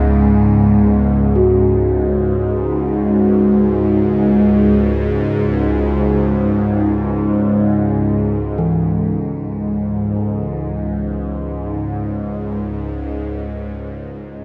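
A detuned, sawtooth-edged bowed-like drone sits up front from the first moment with phaser and vibrato, while a soft gamelan-type bronze metallophone rings out mellow arpeggios through tape echo in the background, the lush hall reverb soaking this ominous dark ambient drone in a dreamy haze before a fade-out begins at 8.5 seconds.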